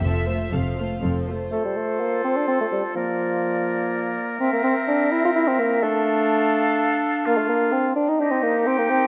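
A cheerful, lively classical-period movement for symphony orchestra in a quick triple metre opens with the string sections alone, bowed sul tasto. The violins carry a floating, soft-attacked melody over a dark, woody second violin line, and the violas fill in a pure accompaniment. Beneath them, the cellos sit intimate and in the background, while the double basses give a clear, symphonic foundation. By 1.5 s the strings have stopped and the woodwinds take over until 9.1 s. An airy, metallic flute, a smooth-topped oboe and a bright, present clarinet carry second lines over a close-miked bassoon, which sits up front as the loudest voice in the accompaniment. The harmony moves from F through Bb/F and C7 toward a closing Eb, all set in a moderate scoring-stage reverb in this short fragment of a longer piece.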